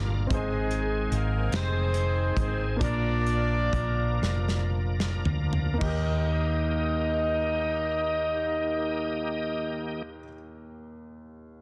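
A dense, heavily limited mix with light small-room reverb frames this soulful, jubilant slow gospel fragment in 6/8, where a mellow, distant horn section sings the melody over a shouting tonewheel organ with fast rotary speaker and key click, a clear, intimate grand piano and a dark, round hollow-body bass up front, while a punchy acoustic drum kit opens with a fill, slows through the first section with another fill at 4.2 seconds, and stops at 6.1 seconds.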